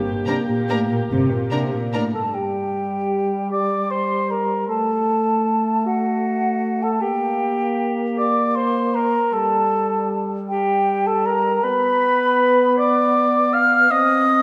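A rubato waltz in three sways through this sweeping, bittersweet orchestral ballroom piece, cut from a longer work. In the opening two seconds, softly bowed strings set the scene: a dark viola section, an up-front cello section and a background double bass section support a rich, lightly vibrato violin melody and a floating second violin line, while a tight French horn section holds sustained chords with vibrato throughout. From 2.1 s an airy, hollow silver flute and a distant, roomy clarinet carry second lines over the horns, set in a wet concert-hall reverb.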